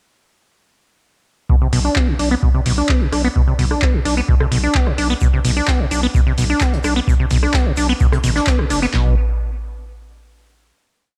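Acid house at 129 BPM in B phrygian, raw and trippy, where a squelchy, resonant sawtooth acid line with accents and slides sits up front through tube saturation, sidechain pumping and analog delay, over a booming, dry analog drum machine's deep four-on-the-floor kick, crisp snare and claps, while a second machine adds metallic programmed hats, rim clicks and backbeat claps, a thick, saturated sine sub bass pumps on the off-beats, and a very quiet, distant brush kit's looped breakbeat slips in at 5.2 seconds before the groove stops at 8.9 seconds for a final note, captured as a home recording on cassette with light small-room reverb.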